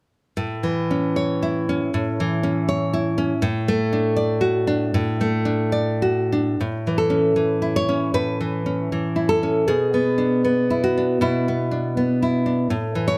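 A solo nylon-string guitar opens at 0.4 seconds, fingerpicked with a full-bodied, deep classical tone and audible finger squeaks, sitting up front under close, detailed microphones and light reverb. This tender, nostalgic romantic piece in A major moves at a rubato 78 BPM in 4/4, spanning A2 to D5 as its harmony passes from A to D/A and later to E7/B. The excerpt is cut from a longer piece and closes at 13.2 seconds.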